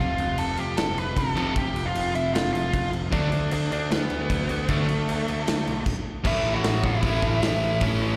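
A straight 4/4 punk rock excerpt at 154 BPM, energetic and rowdy, rides a half-time feel over F and D5 until a brief stop at 5.9 s before shifting to A at 6.3 s, with a dark, up-front overdriven lead guitar carrying the melody through slapback echo and delay, a compressed, double-tracked fuzz guitar riffing in the background, a growly picked electric bass, and a big acoustic rock kit with a punchy kick and bright cymbals, while a hollow-body overdriven guitar and a sludgy distorted guitar join the riff at 1.4 s, all captured as a live gig through the venue's PA with recital hall reverb.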